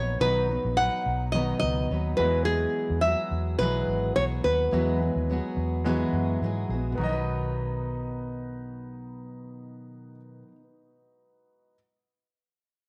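A nylon-string guitar sings a fingerpicked, full-bodied melody with audible finger squeak over a fingerpicked dreadnought steel-string guitar, a polished baby grand piano and a dark, round, punchy muted electric bass with tube saturation, all starting together in this sunny, easy-going acoustic pop fragment at 106 BPM in B major with a light sixteenth-note swing, moving from B to Eadd9 and back to B at 7.0 s in a moderate echo-chamber reverb, the melody stopping at 6.4 s while the piano rings on until 11.8 s.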